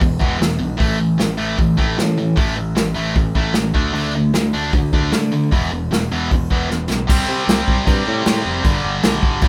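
Aggressive and raw, this short punk rock excerpt from a longer piece drives forward at 153 BPM in a straight 4/4, centred on A minor. A sludgy, overdriven electric guitar carries the riff up front, its picked, double-tracked tone bright and heavy as it moves through power chords on E, A, D and back to E. Underneath, a picked electric bass sounds growly and punchy, recorded direct with a modern edge. The drum kit is played with brushes yet stays up front, with a medium-tuned snare, a punchy kick, hi-hat and crash cymbal in a natural, small-room sound. A drum fill at 6.7 seconds leads into a new passage at 7.1 seconds, where the chords shift to C and then G. The whole band sounds like it is playing live together in one room, with a light touch of reverb.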